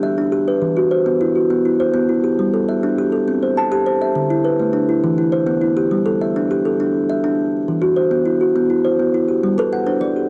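Rippling and hypnotic, this short excerpt of southern African traditional music in a straight 12/8 features a woody, ringing kalimba with a solid-board body playing arpeggios up front with cassette-tape grain in a small room, joined at 9.6 seconds by a quieter, hollow-box kalimba with boxy thumb-plucked arpeggios and tape echo that sounds only until the cut at 10.3 seconds.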